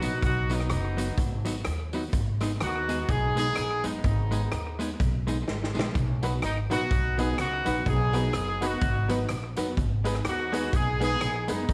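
A swung ska groove at 126 BPM in 4/4 drives this cheerful, joyful passage in B major, cut from a longer piece. A punchy, up-front big-band drum kit works hi-hat, kick, rim click and a medium-tuned snare with a slapback echo, while a woody pizzicato upright bass holds the low end and a jingly, band-limited tambourine sits in the background. Over this, a warm horn section carries the melody up front with a light vibrato and a pop-style ensemble sound. A dark, clean hollow-body jazz guitar, picked and compressed, supplies accompaniment in the background with its own slapback echo. After a drum fill at 5.5 seconds, a worn, slightly detuned upright piano enters at 6.2 seconds with short, boxy stabs. The whole band sits in a small room with light reverb.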